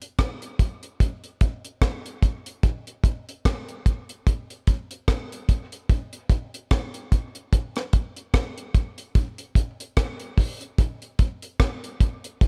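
A deep, dry reggae drum kit leads this short cut from a longer piece, its tight kick sitting up front alongside hi-hat and rim clicks. The groove is spacious and heavy, with a gentle swing on the sixteenth notes that gives the beat a relaxed sway. The room itself sounds close and unreverberant, yet the mix leans heavily on echo, adding depth around the pattern. At 9.2 seconds the music shifts into a new section, marked by a very quiet touch of congas, thick-skinned, damped and high-tuned, struck with hard hands in a live room for only a fleeting moment. The kit carries on through to the close at 12.5 seconds, keeping the weighty mood intact.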